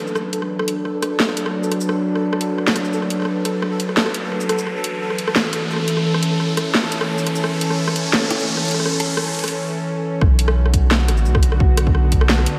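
Half-time drum and bass in B minor at 173 BPM, this heavy, spacious cut from a longer piece builds for about ten seconds before dropping. A tense, string-like sawtooth drone holds sustained chords up front, its detuned unison voices carrying vibrato, a noise layer and built-in reverb, with sidechain pumping and a filter sweep running through the build as the harmony moves from Bm to A. Alongside it, a pulsing, tempo-synced triangle texture with chorus sits in the background, while an electronic riser climbs from 1.4 to 9.5 seconds. The layered, overdriven drum kit pushes forward with a cracking snare, bright hats, rim clicks and shaker, and after a short break the drop lands at 10.2 seconds. There a thick, saturated sub bass with a fast attack and a hard-clipped electronic kick arrive on Bm, all of it drenched in a dreamy church-like reverb.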